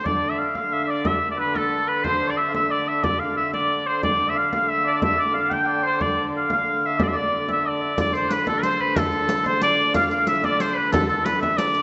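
A clear shawm leads this ancient, driving medieval dance in 6/8, carrying the melody up front with vibrato and scooped notes, while a distant oboe with light vibrato traces a second line in the background over a dark, nasal, reedy hurdy-gurdy drone on D3. A frame drum played with soft hands sits close and dry from 0.1 seconds, and a riq with bright jingles joins at 8.0 seconds as the music moves into a new section. The sound is bathed in a wet recital-hall reverb with a muted top end, and the passage is cut from a longer piece.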